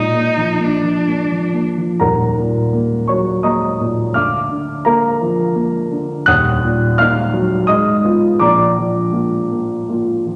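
Bathed in the wet reverb of a scoring stage, this fragment of a yearning, solemn romantic duo in a rubato triple metre opens with a rich, bowed cello singing up front with vibrato, a soft attack and expressive portamento until 1.7 s, while a dark, mellow grand piano with natural, short-sustained tone carries the accompaniment beneath it and continues through to 10.4 s.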